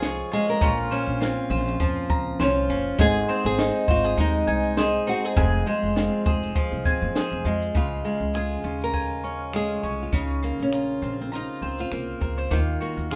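Set in a moderate studio reverb, this sunny, heartfelt acoustic pop excerpt in Db major swings lightly at 101 BPM, with a small, fingerpicked nylon-string guitar carrying the melody over a bright, up-front picked steel-string acoustic guitar, round double-string mandolin arpeggios, a woody, thumpy pizzicato upright bass on gut strings, and a compact cocktail drum kit of finger snaps, shaker, punchy kick and high-tuned snare, all playing throughout as the chords move from Db through Bbmadd9, Ab and Fm before the second section closes on Ebmadd9 at 12.5 seconds.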